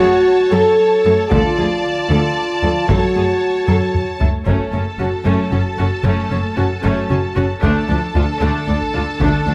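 A straight 6/8 pulse at 76 BPM drives this tense, relentless excerpt of hybrid orchestral and electronic film score in F# harmonic minor, where a glassy, detuned wavetable pluck with chorus and digital delay spins arpeggios over lush, distant violins and violas with vibrato, a bright, focused cello bass line and up-front French horn chords that hold until 4.2 seconds, while hard-stick taiko drums with a vintage, band-limited tone enter at 1.3 seconds, woody double basses join in the background at 4.5 seconds, and a huge, dark reverse cymbal is barely audible at the very end.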